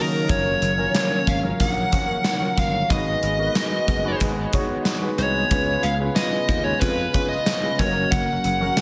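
A fuzz-laden lead guitar carries the melody up front in this uplifting, glossy 1980s-style pop piece, its compressed, distorted tone thickened by slapback echo and delay. Sharing the same high register very quietly, a single bowed violin plays a second line, smooth and warm with gentle vibrato. A dark, mellow, long-sustaining baby grand piano provides the accompaniment, touched by its own slapback echo. Behind it sit a sweeping sawtooth pad that swells slowly with chorus and faint, round synth brass stabs. A bright, growly slap bass holds the low end, and a polished gated drum kit with a tight kick, snare, hi-hat and tambourine enters at 0.3 s at a steady 92 BPM in 4/4. The chords move from F#maj7 through G#m7 and C#7 back to F# in a big arena-style hall, and the passage is cut from a longer piece.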